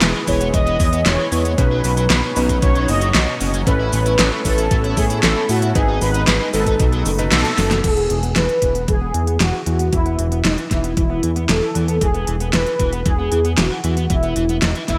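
Nostalgic and dreamy, this synthwave excerpt in E major moves at 115 BPM in a straight 4/4, with a fat, detuned analog bass up front and a knocking electronic kick beside an up-front pop kit of fat snare, crisp hats, cabasa, handclaps and crash under gated reverb, while a biting overdriven guitar riff runs throughout and takes a filter sweep from 7.8 seconds, a mellow, round synth brass melody with vibrato enters at 0.3 seconds, and a lush unison pad with phaser and sidechain pumping plus clangy electric grand piano stabs sit in the background until 7.8 seconds, where a band accent, a brief kick dropout and a drum fill lead into the second section, all in a bright 1980s-style digital production with a lush hall reverb.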